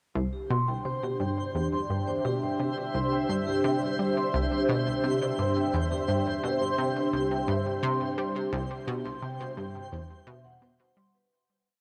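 Ambient, sequencer-driven space music with a luminous, cosmic mood, where a round, detuned analog pluck sits up front with a chorused, delayed 12-step loop that drifts against the bar, while a mellow vibraphone played with soft mallets spins a 7-step arpeggio of its own, its slow motor vibrato giving it a vintage, ringing quality. From 0.8 seconds a sweeping resonant pad of detuned sawtooth and sine with a sub octave rises through a filter swell into slowly shifting chords. A twinkling granular texture holds a single sparkling high note with an octave-up shimmer, and the whole piece sits in a huge, wet ambient reverb before fading out from 7.6 seconds to the end at 11.3 seconds.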